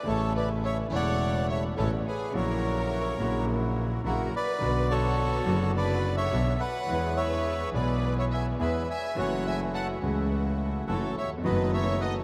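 This tango excerpt feels playful and passionate, moving with a rubato sway over a chord progression that runs from A through F#7/A# and Bm to E, F#m7 and B7/F#. A reedy, close-miked bandoneon carries the melody up front, dark and full, while a second bandoneon, equally dry, supplies stabs from further back. A lush, distant violin section with soft attacks and expressive vibrato traces a second line in the background. A vintage concert grand piano gives intimate accompaniment with deep bass and audible action noise. A bowed double bass, entering at 0.1 seconds, sits up front with a biting, earthy tone and light vibrato, and the whole ensemble rings in a vast, echoing space with a huge ambient reverb.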